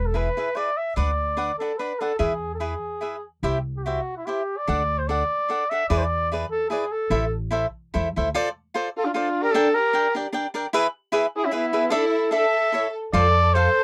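A swung, rubato feel in three drives this passionate, dramatic Mexican folk mariachi passage, where a warm, classical-style solo trumpet with light vibrato carries the melody up front in a roomy tone. A bright, crisp picked cavaquinho accompanies throughout, while a woody, thumpy pizzicato upright bass on gut strings anchors the low end until 8.3 seconds and briefly returns at 13.1 seconds. At 9.0 seconds a rich, smooth, even bowed violin section adds a distant second line, all within a dry, close 1970s-style studio sound touched by light reverb.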